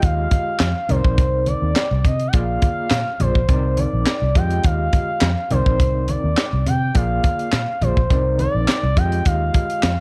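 A gliding, detuned portamento lead with chorus and slapback echo carries the melody over a tight, up-front funk kit with handclaps, a round, foam-muted fingered bass, a barky overdriven tine electric piano with medium tremolo, and very quiet congas entering at 0.3 seconds, in this slick, late-night early-eighties boogie funk excerpt at 104 BPM in C minor, cycling through Fm9, Cm9 and Bb7 with studio reverb and a dark, warm production.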